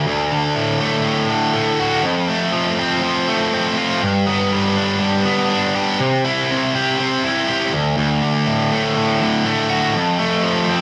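Sunny and confident, this short rock cut from a longer piece features a lone distorted electric guitar carrying the whole 10.8 seconds in straight 4/4. Bright, picked and double-tracked, the overdriven guitar sits up front and moves through D5, F, G and C before returning to D5 and F. A moderate studio reverb gives the sense of a band playing live in one room.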